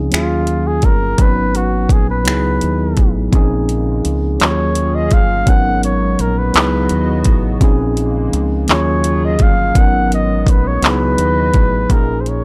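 Slow six-eight R&B with a sultry, late-night mood, taken from a longer piece and built on a cycle of minor eleventh chords. A mellow tine electric piano, heard through its built-in speakers, carries the accompaniment, while a deep dub fingered bass sits underneath with a round, punchy tone roughened by transformer saturation. The electronic drum kit is up front, re-recorded in a small room, with a knocking kick, metallic hi-hat, finger snaps and handclaps. A warm flugelhorn takes a jazz-style solo across the whole excerpt, shaped by light vibrato and scooped notes. At 3.3 seconds a hollow, flute-like pad with chorus enters in the background, its detuned, warbling vintage tone slowly evolving behind the band. The sound is dry and gritty, with little reverb.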